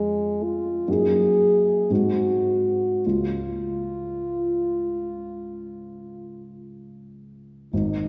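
Captured in a church or concert hall, this short passage is bathed in a wet, lingering reverb that lets each note bloom for nearly two seconds. It is a lyrical, tender piece of romantic classical music in 4/4, taken from a longer work and played with a flexible, rubato feel. A dark French horn carries the melody up front in a classical style, its soft attack giving the solo line a gentle, rounded entry. A baby grand piano supports it with mellow, intimate accompaniment, smooth and vintage in character, with the faint noise of its action audible close up. Both instruments play together from the opening through 8.1 seconds, and the harmony settles home onto the tonic chord at 3.0 seconds.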